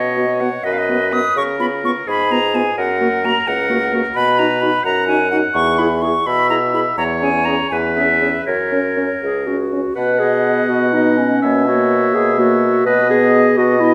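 Set in a reverberant recital hall, this short cut from a longer piece is a quick, spirited and graceful classical-period movement for wind quintet, in 6/8 at 79-88 beats per minute counted in dotted quarters, played with a supple rubato. The flute carries the melody with an airy, silvery brilliance, its tongued notes shaded by vibrato and heard close up, while the oboe sings a clear second line with a smooth top. Beneath them the bassoon sits up front with a mellow tone and light vibrato, anchoring the bass. The clarinet, with its soft attack, and the vibrato-tinged French horn join as accompaniment at 0.2 s, the horn a little further back in the blend. The music begins in F# major and settles into B major from 4.2 s, with a new section arriving at 10.0 s.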